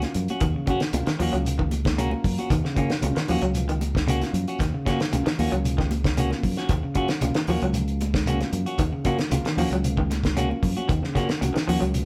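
Hypnotic and intense, this short afrobeat excerpt rides a straight 4/4 groove on a single Ebm7 chord for its full twelve seconds, played by a band together in one room with moderate studio reverb. The cloth-damped drum kit sits up front with a fat snare, tight kick and hi-hat, its sound saturated and gritty with a rolled-off top, while a dark, round fingered electric bass anchors the low end. Two electric guitars share the middle: one at the edge of break-up picks twangy arpeggios, and a clean one adds picked stabs. In the background, an overdriven reed electric piano plays reedy accompaniment through a combo amp and slips in a brief fill at 1.7 seconds. Very quiet congas with a bright, high-tuned thin skin and a grainy, mellow shekere fill out the percussion beneath the band.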